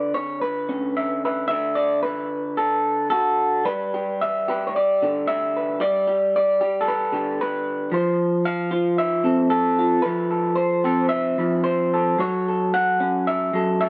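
Nostalgic and hopeful, this short folk piece, cut from a longer work, moves at a rubato 112 BPM in 4/4 with a lone electric guitar through a small old amp, picked, twangy and slightly broken-up, with a compressed, lo-fi edge and placed up front. The guitar ranges from D3 to F#5, opening on a rootless Aadd9/D that settles onto D, then shifting at 3.6 seconds into a passage that moves through G, Fmaj7 and F#m7. A moderate studio reverb and a dark production surround the playing.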